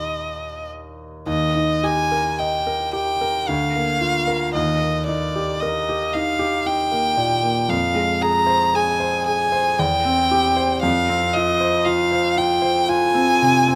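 A focused, close solo violin sings a lyrical melody with vibrato over an intimate grand piano accompaniment whose action noise can be heard, in a serene romantic classical duo in a flexible, rubato three-beat lilt, captured with detailed close microphones in a moderate recital hall reverb and cut from a longer piece.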